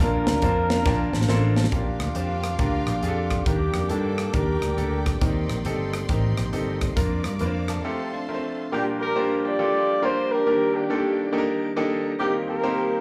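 Hopeful and uplifting, this excerpt of uptempo gospel swings at 138 BPM in Bb major, heard as a live gig through a club PA with light reverb. A mellow horn section carries the melody up front, smooth on top with light vibrato and a slapback echo, dropping out briefly before returning at 8.7 seconds. A brilliant grand piano accompanies throughout and opens with a fill, while a fingered electric bass, punchy and amped, and a polished modern drum kit with a tight kick and medium-tuned snare drive the groove until both stop at 7.8 seconds for a short break. A tonewheel organ holds smooth sustained chords in the background through a fast rotary speaker and chorus vibrato, and a lush bowed string section adds focused high chords. Just before the horns return, a clean, compressed electric guitar slips in a brief picked second line with spring reverb, over chords moving from Bbmaj7 through Ebmaj7 and Cm7 to F.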